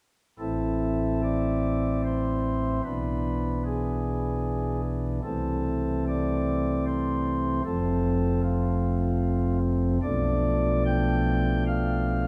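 Solemn and dark, this short cut from a longer classical piece is a chorale-style passage for solo pipe organ in A minor, moving in an unhurried 3/4 at 75 BPM with a rubato feel. The organ speaks on soft flute stops from 0.4 seconds, its romantic voicing spanning from a deep F1 up to G5 and sitting up front in the sound. The tone is warm, giving the harmony a gentle, rounded glow. The chords pass from Am through E7/B, Am/C and F before settling on a shadowed Bm7b5 at 10.0 seconds, leaving the phrase unresolved. A long, wet church reverb of 3.4 seconds surrounds the organ, so each chord hangs in a vast, stone-like space until the playing stops at 12.3 seconds.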